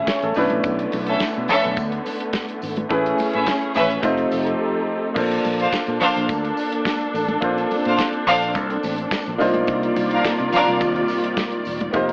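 A straight 4/4 disco groove at 106 BPM drives this short, joyful and danceable excerpt, cut from a longer piece, with a damped 70s drum kit laying down a tight kick, a medium-tuned snare, hi-hat and crash cymbal in a dry, acoustic sound. A punchy, amped fingered electric bass sits under the kit, while close, thick-skinned congas and a jingly tambourine in the background add quiet percussion. A boxy, up-front baby grand piano plays accompaniment and a dark, woody string section holds lush sustained chords with a smooth top, moving through Bm11, Amaj9 and F7 before a brief break at 4.6 seconds settles the music into Bb major at 5.2 seconds on Bbmaj9, later shifting to Cm11. From 1.1 to 10.8 seconds an earthy violin section with light vibrato carries a prominent second line. The whole mix has an AM radio character, with light reverb and a small room ambience.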